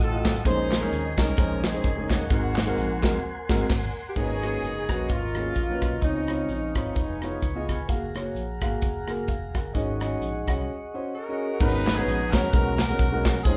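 A swung 4/4 groove at 129 BPM drives this reverent, uplifting stretch of uptempo gospel, cut from a longer piece, with a tight, up-front acoustic drum kit and faint, crisp handclaps joining at 0.3 seconds under a round, punchy fretless bass and a soft, flute-like tonewheel organ holding sustained chords through a slow rotary speaker. A boxy grand piano with audible action noise and long sustain fills out the accompaniment while a distant, roomy horn section carries the melody, joined by a mellow, subtoned alto saxophone with vibrato and scooped notes from 4.1 to 7.7 seconds. Following an earlier band accent, the horns return at 11.1 seconds during a brief break, over chords moving from Bbm11 through Dbmaj9 and Ab7sus4, all set in a moderate studio reverb that captures the band playing live together in one room.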